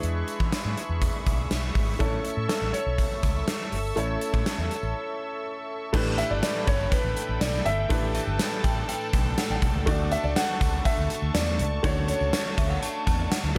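A glossy, lightly reverberant small-room sound frames this nostalgic 1980s-style pop excerpt, built on a gated drum kit with a tight kick and bright cymbals, a dark, punchy muted electric bass, a clear concert grand piano and a brassy, warbling analog pad with chorus, while a faint, distant tambourine jingles beneath. At 2.0 seconds a felt-muted upright piano carries the soft, intimate melody through tape echo, its action noise audible, and a very quiet, crunchy overdriven guitar joins at 5.9 seconds after a short break. From 8.1 seconds an inharmonic FM synth chime rings out a second line, treated with ensemble chorus and tape echo.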